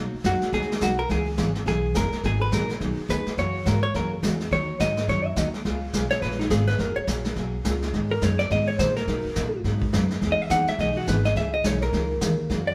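Recorded live in one room with a moderate stone-room reverb, this swinging, down-home western swing excerpt features a clean, compressed hollow-body jazz guitar soloing up front over a thumpy, woody pizzicato upright bass, a punchy vintage brush kit with brushed snare, hi-hat and kick, and a full-bodied picked steel-string acoustic guitar with finger squeak in the background, while a detuned, jangly honky-tonk upright piano slips in very quietly for a moment at 10.5 seconds.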